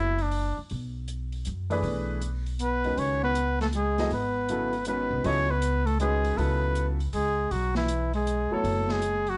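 This modal jazz excerpt in C# minor opens with trumpet, piano and upright bass together, a swung 3/4 at 159 BPM with an intense, spiritual mood. The trumpet's first phrase is brief and pauses at 0.6 seconds. It returns at 2.6 seconds, mellow and up front, with vibrato and scooped notes, while a bass clarinet enters beneath it on a second line with a smooth top. The concert grand piano accompanies with an intimate, natural tone, deep low end and audible action noise, moving through Bm11, C#m11 and B9sus4. The pizzicato upright bass sits up front with a woody, steel-string sound, and a quiet open jazz kit adds hi-hat and a medium-tuned snare, dark and rolled-off in a small room. Light reverb surrounds the group, and the overall sound stays soft-edged, with nothing above 10.5 kHz.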